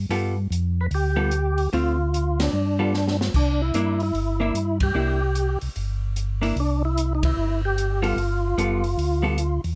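Dry and closely miked, this swinging, bluesy soul jazz organ trio excerpt moves at 149 BPM in G mixolydian, with a mellow, round tonewheel organ carrying the bass line through a slow rotary speaker and a clean, picked hollow-body electric guitar comping up front. A fat, lightly overdriven tonewheel organ with percussive attack, key click and chorus vibrato takes the melody, while an acoustic kit with dark cymbals, a high-tuned snare and a boomy kick sits further back. The band hits accents at 2.3, 4.8 and 7.2 seconds, with a short drum fill after the first, over chords moving from G9 through Dm7 and back to G9, then on to C9 before returning to G9.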